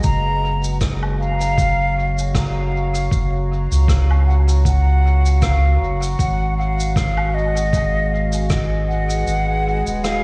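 This ambient dub excerpt drifts at 78 BPM in 4/4 with a gentle swing on the sixteenths, its mood meditative and hazy. A mellow, hollow silver concert flute carries the melody with airy vibrato and tongued notes, each phrase trailing into dub echo. Beneath it, a deep, dark pad holds sustained chords from F#maj7 to G#m7 at 6.2 seconds, its slow-attack sawtooth layers thickened by chorus and its own reverb. A round sine sub bass sits up front with a fast attack and sustained notes, while a muffled, thumpy, pitched-down kick with a compressed, tape-softened character thuds along until it stops at 8.7 seconds. Quiet acoustic shaker, rim click and woodblock add natural hall color and echo, and the fairly dry mix is wrapped in vinyl crackle and studio ambience.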